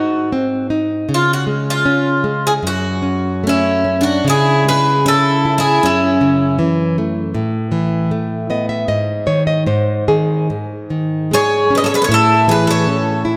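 Passionate and mournful, this fado-style ballad excerpt moves in a rubato 2/4 at 72-80 BPM, starting in F# minor before shifting to C# minor at 4.2 s, with a fingerpicked nylon-string guitar, intimate and up front with fresh strings and finger squeak, accompanying throughout and taking a fill from 8.1 to 10.5 s. An up-front Irish bouzouki carries the melody with bright, metallic double strings, while a picked twelve-string acoustic guitar, shimmering and octave-doubled with analog delay, adds a second line entering at 3.5 s. The whole mix is dreamy and soaked in a long plate reverb.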